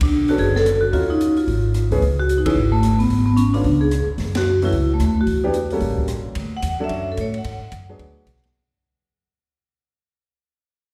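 Ringing, metallic vibraphone with medium hard mallets and a fast motor vibrato carries the melody up front in this cool, swinging small-group bop fragment at 221 BPM, over thumpy gut-string upright bass, a clear upright piano comping chords such as Bm9 and Dmaj7, and a soft drum kit with dark cymbals, a high-tuned snare and a boomy kick, all bathed in a lush church reverb, with band accents at 2.4 and 4.3 seconds before a fade-out from 6.4 seconds.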